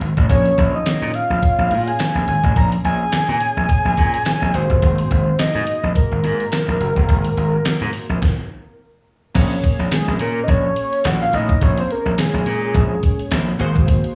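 Heard through a club PA with light reverb and small-room ambience, this late-night slice of early-eighties boogie funk in Bb minor rides a lightly swung 106 BPM groove, where a thumpy, tape-warm detuned 8-bit drum machine with handclaps and crash joins a gritty, overdriven slap bass up front, a round, sub-octave synth lead with chorus, vibrato and slapback echo carries the melody, and a detuned sawtooth polysynth comp with filter sweeps sits in the background over Bbm7 and Ab9 chords, all pausing for a stop at 8.2 seconds before a new section kicks in at 9.4 seconds.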